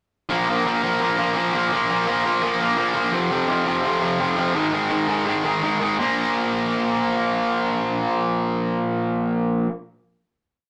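A rough rehearsal-room recording with tube saturation and light reverb carries this short, rebellious and upbeat punk piece at 169 BPM, where a lone, bright, overdriven electric guitar, double-tracked and up front, drives picked eighth-note power chords through a Bb5, F5 and Ab5 riff from 0.3 seconds before landing on a final Bb5 chord at 6.0 seconds.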